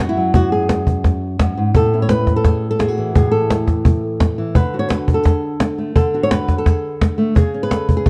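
Mournful yet fiery, this short flamenco excerpt sets a fingerpicked acoustic flamenco guitar up front with a slapback echo, carrying the melody over shifting chords, while a snappy, close cajon with snares joins at 0.2 seconds, all wrapped in light reverb and a dark production.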